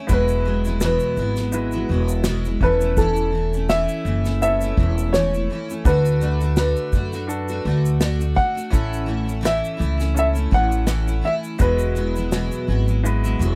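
A dark, boxy upright piano carries the melody in this sunny, carefree acoustic pop excerpt in A major at 83 BPM with a light swing, set over a clear baby grand piano, a bright, double-tracked jumbo steel-string guitar picked with audible finger squeak, a thumpy, woody pizzicato upright bass sitting up front, and an airy unplugged kit of punchy kick, shaker and snare played with bundle sticks, in a dry, close 1970s-style studio recording.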